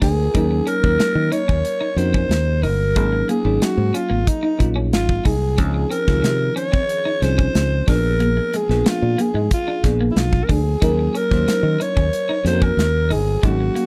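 A straight 4/4 groove at 92 BPM from a tight, polished studio drum kit of kick, snare and hi-hat, together with a punchy, growly fingered bass, drives this upbeat, urban 1980s jazz-funk pop excerpt, where a raspy, breathy alto saxophone with light vibrato and slapback echo carries the melody up front over a sparkling, bell-like FM electric piano with subtle chorus and a compressed, slightly broken-up guitar riff bathed in lush chorus, all moving through Ebm7, Ab9sus4, Dbmaj9 and Bb7b9 before returning to Ebm7 in a dry, close recording with a small room reverb.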